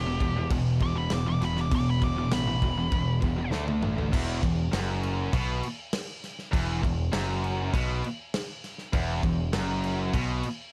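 Epic and aggressive, this heavy metal excerpt at 100 BPM in 4/4 opens with a nasal, overdriven lead guitar through a parked wah and tape echo soloing over E5 and D5 power chords until 3.5 seconds, backed by two bright high-gain guitars riffing in the background, a very quiet, double-tracked sludgy guitar that drops out at 4.1 seconds and returns at 8.9 seconds, an up-front growling overdriven bass, and an acoustic drum kit with a punchy kick, crash, toms and a medium-tuned snare whose fill leads into the next section, all in a dark, dry production.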